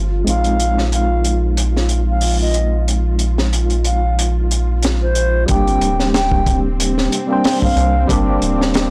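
Trip hop at 92 BPM with a swung 16th feel in G phrygian, hypnotic and cinematic, set in a dry, gritty hardware sound with transformer saturation. A deep, nasal analog bass sits up front beside a punchy, dark breakbeat kit with a high-tuned snare and rolled-off top. A lightly overdriven tine electric piano pulses with tremolo through a combo amp, while string-machine cellos hold mellow, chorused chords in the background under a filter sweep until 5.5 seconds. From 0.3 seconds a close-miked baroque flute carries the melody with woody tone, vibrato and tape echo, as the harmony moves from Bb7sus4 to Gm at 5.5 seconds.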